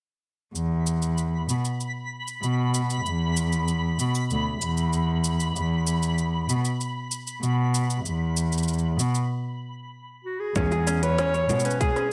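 Hopeful and gently glowing, this folktronica passage, cut from a longer piece, opens at 0.6 s with a dark, veiled cello playing the bass line con sordino, bowed by a single player with vibrato, soft attacks and portamento, sitting up front. Beside it, a tape-toned electronic kit re-recorded in a small room supplies congas, a woody snare, crisp hi-hats and shaker in a straight 4/4. High above, a twinkling granular texture with an octave-up shimmer and its own reverb sustains a single sparkling note until it ends at 9.3 s. At 10.2 s a warm, classical-style solo clarinet steps forward with the melody, and soon a light, thumb-plucked tenor ukulele joins with arpeggios trailing a diffuse ambient delay, alongside a tight electronic kick. The whole mix is dreamy and soaked in a lush hall reverb.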